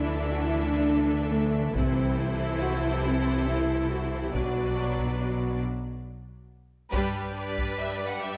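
A dark, relentless stretch of epic orchestral film score in B phrygian at 139 BPM in 3/4, cut from a longer piece, with a mellow French horn section holding sustained chords over a close, rich cello section and a distant, intense chamber double bass section, while a focused, rich violin line and a clear viola section fill out the lush, bowed strings. Taiko drums struck with hard sticks enter at 1.8 s and drive on until 7.8 s, and after a break a band accent at 6.9 s brings in a smooth, warm violin melody with vibrato and a bright triangle tucked in the background. The scoring stage adds moderate reverb that gives the ensemble a spacious, cinematic sheen.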